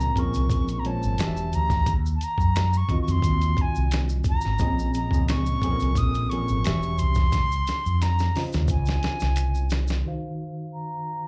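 Introspective and late-night, this brief neo-soul and R&B excerpt at 88 BPM in Eb dorian, heard as a live club gig through the venue's PA, sets an airy, reedy flute melody and a worn, slightly out-of-tune tine electric piano, both filtered with slapback echo, over a round, dark fretless bass, close and dry maracas and finger snaps, and a gritty, compressed sampler-style drum kit with a thumpy kick and fat snare that plays a fill from 7.3 seconds, before the bass, percussion and drums stop at 10.0 seconds and a filter sweep carries the flute and piano to the end.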